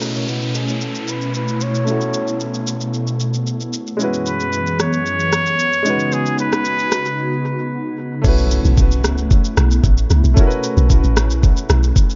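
A deep, round log drum bass arrives at 8.2 s after a brief break in this relaxed amapiano excerpt at 113 BPM in B mixolydian, following a nasal, straight-muted trumpet melody that ends at 7.9 s, with clear baby grand piano accompaniment, a hollow, airy pad pumping under sidechain, and an electronic R&B drum kit of knocking kick, rim click, shaker and crash cymbal, as a filter sweep runs through the opening, a downlifter and impact mark the turns, and the mix sits dark and echo-heavy in light reverb.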